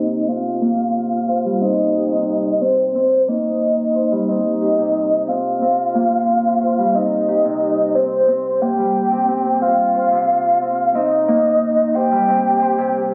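Cerebral and eerie, this short IDM excerpt moves at 90 BPM in C minor, holding on a single Cm chord throughout its 13.1 seconds. A warbling, nostalgic lead carries the melody up front, its dark mix of triangle, sawtooth, square and sine tones with a sub octave given fast attacks, long sustain, vibrato, chorus and delay. Beneath it, a ringing, fingerpicked acoustic Celtic harp plays arpeggios through a low-pass filter, tape echo and a continuous filter sweep, all set in a lush hall reverb with the murky, roomy character of a phone recording.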